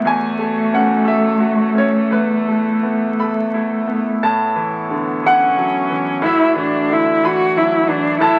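A 6/8 pulse moves in dotted quarters at roughly 54-63 BPM, loosened by a free rubato, in this intimate, tender neoclassical fragment in A major, cut from a longer piece. Up front, a bright, brilliant grand piano with a natural tone carries the accompaniment across a span from E2 to B5. Also close, a single muted cello enters at 0.1 s as a second line, bowed con sordino with a veiled, dark voice, soft attacks, vibrato and gentle portamento. Behind them a hand-pumped harmonium holds reedy, breathing sustained chords with a smooth, warm glow. The harmony moves from A6/E to Esus4, then turns at 4.2 s to Aadd9 and Dadd9/A. Moderate studio reverb adds a modest ambience, and the sound of a very old 78 rpm record, with vinyl crackle, colours the whole recording.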